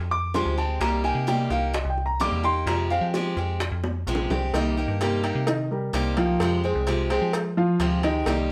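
A metallic FM bass opens this short cut from a longer Cuban son and guajira piece, its digital tone sitting up front with a fast attack that then decays. Almost at once a dark baby grand piano joins with arpeggios, its mellow, intimate sound carrying audible action noise and a short sustain, and it takes a solo through the first 4.5 seconds. Bongos and cowbell sit lower in the mix with a round, low-tuned, vintage character played with soft hands, and a drum fill from 3.8 seconds leads into the second half. A picked steel-string parlour guitar adds bright, boxy accompaniment close to the listener, while the harmony moves between Fmadd9 and Cm7. Light reverb frames the sultry mood in a straight 4/4 feel.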